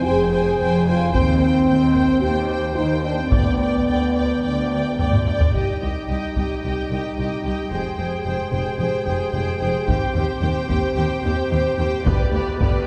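Cinematic, epic orchestral film score with a dark weight, cut from a longer piece. Lush bowed strings carry it: one violin section sings the melody with a focused, smooth-topped vibrato, while a second, richer violin section plays a line that sits more distantly beneath it. A close viola section fills in the accompaniment, and the bass is held by expressive, soft-attacked cellos and an even double bass section set in the background. A mellow French horn section in classical style sustains chords through the middle, as the harmony cycles through Fmadd9, Cm/Eb, G/D and Cm. A close, dry taiko ensemble struck with hard sticks comes in at 1.1 s, plays a fill at 5.0 s that leads into the second section, falls away, and returns at 9.9 s. The whole ensemble is heard from further back in a wet scoring-stage space that gives it a lingering tail.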